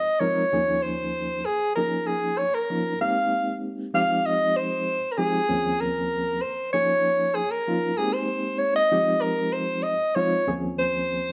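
A mellow soprano saxophone leads this slick, bright jazz excerpt at 96 BPM in a swung 4/4, its subtone, light vibrato and scooped notes sitting up front, while a reedy, barky electric piano with light overdrive and fast tremolo joins at 0.2 s to comp through Fm7, Eb13sus4, Db69 and Abmaj9 changes in Eb mixolydian, the band playing live together in a large studio with moderate reverb.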